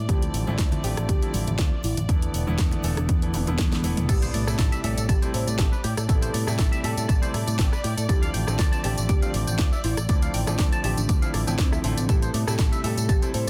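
A lightly swung 4/4 groove drives this groovy, cosmic nu-disco excerpt, built on a punchy, overdriven electronic kick up front, a house kit with cracking snare and bright hats, a bright picked electric bass through an envelope filter, an intimate concert grand piano with audible action noise, a dark, muted string section and a round, sub-octave synth lead sitting in the background, and very quiet tube shaker and congas that stop at 4.1 s as a drum fill gives way to the drop, where a clean, twangy electric guitar riff with lush chorus enters alongside a very quiet electronic impact.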